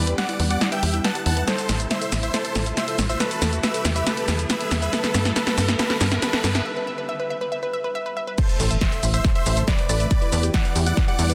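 A straight 4/4 pulse at 139 BPM drives this soaring, bittersweet uplifting trance passage in E minor, cut from a longer piece, with a punchy analog drum machine of snare, hi-hat, shaker and crash rolling through a fill across the build-up before a short break at 6.7 seconds. A tight, nasal sequencer bass of sawtooth and square waves sits up front and pumps against the sidechain, while a huge, euphoric supersaw lead carries the melody, bright and detuned, with delay trailing its sustained notes. Two lush unison plucks fill the middle: one plays a second line through dub echo, and the other, wave-folded and tucked in the background, spins arpeggios under a filter sweep that builds until the drop. Behind them an ethereal, granular pad holds sustained chords with octave-up shimmer, chorus, phaser and a touch of vintage 12-bit grit, as a very quiet riser and impact rise beneath the build and land with the drop. 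At 8.4 seconds a layered, tape-warm electronic kick enters up front, and the passage moves from Am back to Em7 inside a lush hall reverb and a dense, heavily limited modern master.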